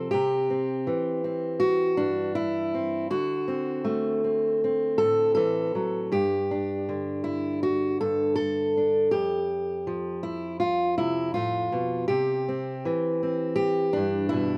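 A lone fingerpicked steel-string acoustic guitar opens this short folk passage at 0.0 seconds and carries it alone to the end at 14.6 seconds. The mood is peaceful and warm, moving at an unhurried 80 BPM in a straight 4/4. The auditorium-style guitar has a dark tone and sits up front, spanning F2 to A4, with the tuning set to A4 = 442 Hz. Recorded outdoors, it sounds dry and close, with little reverb and room sound absent. The harmony moves from C through D7, G5 and Fadd9 before returning to C at 12.1 seconds, and the passage is cut from a longer piece.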